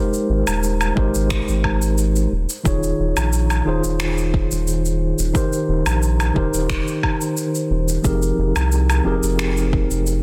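A mellow tine electric piano opens this short excerpt of relaxed, wistful sunset chillout, laying down chords with a gentle delay trailing behind them. Almost at once an electronic kit of shaker, woodblock and finger snaps joins in, its layered, overdriven tone sounding as though replayed through a large room, with soft clipping roughening the snare. A round, dark analog bass with a fast attack and sine-like depth sits up front beneath the piano, and a deep, overdriven electronic kick drum arrives at 1.0 seconds to anchor the straight 89 BPM pulse in 4/4. Set in F minor, the harmony drifts from Abmaj7 through Eb9sus4 and Cm7/Eb before settling on Fm11 at 8.0 seconds. Light reverb surrounds the mix, and the dense, heavily limited master keeps the clean, direct keys close and present.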